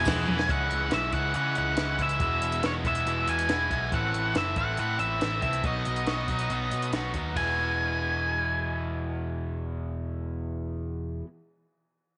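Indie rock, wistful yet upbeat, in which a dark, fuzz-laden octave lead guitar with slapback echo carries the melody over a double-tracked, up-front semi-hollow guitar riff, a growly, punchy overdriven bass, and a compact cocktail kit with a high-tuned snare that opens with a fill at 0.3 seconds and drops out at 7.5 seconds, while the mix sits in an echo-chamber reverb with a softened top end in this cut from a longer piece.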